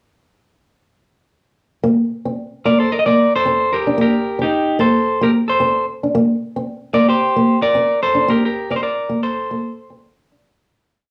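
The piece opens at 1.8 seconds with a fingerpicked old ladder-braced acoustic guitar, dark, woody and boxy with the character of old strings, playing an up-front ostinato. This warm, joyful highlife tune moves at 112 BPM in 4/4 with a light swing on the sixteenths, settling in B-flat major. At 2.7 seconds a clean electric guitar enters up front with a motif-based melody built from hook phrases, partly doubled in thirds. The harmony circles through Bbsus2, Gm/Bb, Eb and Bbmaj9, later colored by a Bb69 chord. A wet studio reverb and small room ambience surround the two guitars, and the whole short piece fades out from 8.3 seconds to its close at 10.4 seconds.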